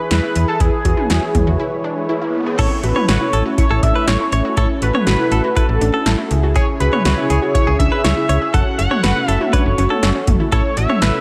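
An octave-doubled sawtooth lead, bold and retro with vibrato, chorus and delay, opens this luminous, nostalgic synth-pop excerpt at 121 BPM in A major, over mellow synth brass, a sweeping resonant pad and a warbling unison pluck playing arpeggios through delay, with a snappy FM slap-like bass and an overdriven electro analog drum machine of deep kick, punchy snare, metallic hats, toms and crash sitting up front. A short break from 1.6 seconds carries an electronic riser, and at 2.6 seconds a twangy, clean, direct-recorded electric guitar joins with a delayed second line as the chords move from A through C#m and F#m. Light reverb surrounds the mix, and the drums carry the sound of a large room.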